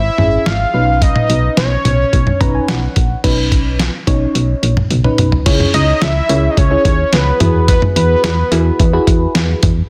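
A fat, nasal analog lead carries the melody up front, its sawtooth-and-square tone thickened by a sub octave, a filter sweep and vibrato, with chorus and tape echo trailing behind it until it stops at 9.0 seconds. This is a melancholic, cool slice of synth-pop at 108 BPM in a straight 4/4, cut from a longer piece and moving from C#m over G# to Badd9, then later to C#m and Eadd9. Beneath it, a punchy, round FM bass with a fast, decaying attack anchors the low end, while a soft, warbling FM electric piano with a vintage noise layer and chorus adds dark accompaniment and plays a fill from 2.1 to 3.2 seconds. The lo-fi sampler-style drum kit sits up front with a thumpy kick, fat snare, hi-hat, toms, crash and cowbell, sounding muffled and tape-warm, and it drops a fill from 4.9 to 5.5 seconds. Light reverb surrounds the parts, and the master is dense and heavily limited in a modern style.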